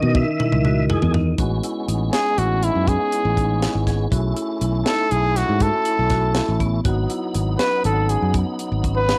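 Progressive instrumental band music in 11/8 at 242 BPM (eighths), driving and intricate in A lydian, cut from a longer piece and captured as a home cassette recording in a lightly reverberant room. It opens with a drum fill from the dry, tight funk kit with its high-tuned snare while the tonewheel organ takes a brief solo with key click and fast rotary shimmer. From 1.4 seconds the organ settles into full accompaniment over an up-front fingered electric bass and woody hard-mallet marimba arpeggios in the background, and at 2.1 seconds a trumpet enters with a classical-style melody, warm and lightly vibrato, over chords moving from Amaj7 through B7sus4 to G#m7.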